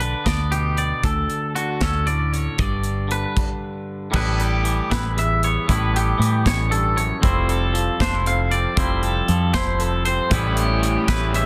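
A warm, twangy electric guitar picks clean arpeggios soaked in spring reverb and slapback echo over a second twangy guitar's bright, compressed accompaniment, a warm, foam-muted fingered bass, and an airy, punchy acoustic drum kit with crash, hi-hat and snare in this intricate, wistful 6/8 math rock and midwest emo excerpt, which halts briefly at 3.4 s before moving through lush extended chords until a double-tracked, overdriven garage guitar riff cuts in at 10.3 s, all in a dense, heavily limited modern master.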